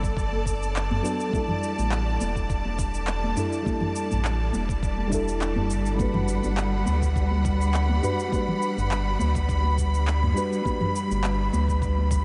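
A lightly swung 103 BPM groove in 4/4, built on a gritty, thumpy electronic kick and a tape-toned R&B kit of handclaps, shaker and toms in a small room, with soft-handed congas joining in the background at 0.3 s, carries this blissful sunset chillout excerpt in G major, where a round, tube-saturated sub bass sits up front, a lush bowed string section holds clear sustained chords, and a dark, warbling FM electric piano with chorus, tremolo and analog delay moves through Bm7, A7sus4 and Gmaj7, the whole dreamy mix soaked in huge ambient reverb with a softened top end.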